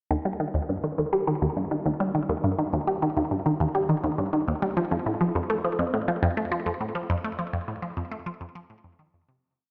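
A straight 4/4 pulse at 103 BPM carries this short ambient piece in Eb lydian, tuned to A4 = 441 Hz, with a luminous, expansive mood. A single resonant blip pluck plays alone from 0.1 to 9.4 seconds, running a repeating six-step sequence that drifts against the bar line. Its sound is juicy and squelchy, a bright sawtooth with a noise layer and ring modulation, shaped by a filter pluck with a fast attack and short decay, moving between Eb2 and A3. Phaser and delay color the synth, which sits up front in a dreamy mix soaked in a long plate reverb. The whole piece fades out from 6.3 seconds to its close.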